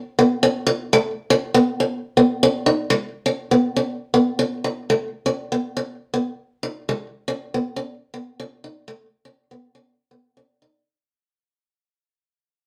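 A straight 4/4 highlife feel carries this sunny, carefree fragment of a longer piece, where a boxy, up-front picked acoustic archtop guitar takes the solo from 0.2 seconds, set in a live room with moderate studio reverb, as the music fades out from 2.9 seconds to its close.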